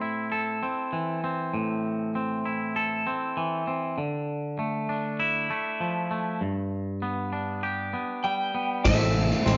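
Cinematic and melancholic, this short post-rock excerpt moves at a steady, straight pulse in 4/4. A twangy, clean electric guitar sits up front on its own for most of the opening, picking out fingered arpeggios over a progression that moves from Am through Dmadd9 and G. At 8.2 seconds an electric slide guitar, played with fingerpicks and slightly broken-up, adds a high melody. From 8.9 seconds the full band arrives as the chords return to Am: a huge arena drum kit with a punchy kick, bright cymbals and a crash, a growling, overdriven picked bass, a felt-muted upright piano murmuring soft arpeggios in the background, and a lush, very quiet bowed string section holding sustained chords with vibrato. The players share one stone room whose wet reverb gives the sound a live, dark-topped character, and the piece is cut off just as the full ensemble comes in.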